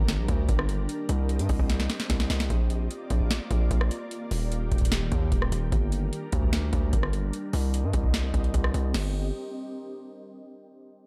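A distorted, saturated 808-style bass sits up front with a booming analog drum machine's deep kick, crisp snare and metallic hats in this eerie, dark half-time trap excerpt, while an ethereal, warbling pad with chorus and reverb holds sustained chords behind them, a drum fill arriving at 1.7 seconds before a filter sweep moves across the pad from 2.5 seconds.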